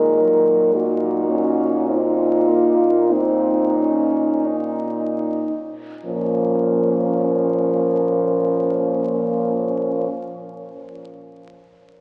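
This classical excerpt for horn quartet unfolds as a lyrical, yearning piece in Bb minor, moving in a rubato 3/4 at a very slow 36 to 55 BPM. A mellow French horn carries the melody between Bb3 and Bb4 with a light vibrato, sounding distant and roomy, as if set back in the background. Beneath it, a clear horn with vibrato sings a second line, while an up-front horn supplies warm accompaniment, and the fourth horn provides the bass on a low Bb2, all four playing together from 0.0 to 10.1 seconds. The opening passage slows as it moves from Ebm/Bb, then settles onto Bbm when a new section begins at 6.1 seconds. A wet cathedral reverb with a long 4.7-second decay gives the quartet a vast, hallowed space, and the sound comes through as if from a very old 78 rpm record, with vinyl crackle lending it a worn, melancholic patina.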